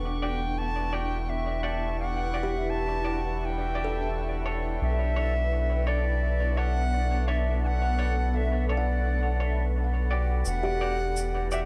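A bright, reedy wooden flute sits up front in this meditative, hazy ambient dub fragment, its airy, close-miked melody carrying vibrato and dub echo from 0.2 seconds. Beneath it, a deep, round sub bass holds the low end with tube saturation, while a cloudy, evolving granular pad sustains blurred chords through its own built-in reverb. A woody kalimba plays soft, short arpeggios in the background through dub echo, and a clean, hollow-body electric guitar adds compressed, picked stabs that also feed into echo. A glassy texture of drifting overtones hangs faintly above with chorus and reverb until 10.5 seconds, when a brushed cabasa with a rolled-off top enters. At 85 BPM in 4/4 with a lightly swung sixteenth feel, the harmony rests in E dorian, moving from Em9 to Bm7 at 4.8 seconds and back to Em9, all within a light room reverb.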